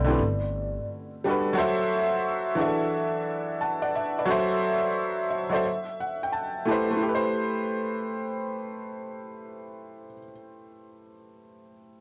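A dark, ringing vibraphone note sits in the background while a thumpy, pizzicato gut-string upright bass and an intimate felt-muted upright piano, its action noise audible, open this excerpt from a nostalgic, reflective hip hop piece at 88 BPM in A dorian with a swung 16th-note feel. The vibraphone and bass fall away at 0.8 s, leaving the mellow piano up front through chords such as Gmaj9, F#m7b5, E9sus4 and Am9, including a piano fill from 5.0 to 7.0 s. Cassette tape colours both the piano and the vibraphone, which also carries tape echo, while light reverb and small room ambience give the whole an unpolished home-recorded intimacy.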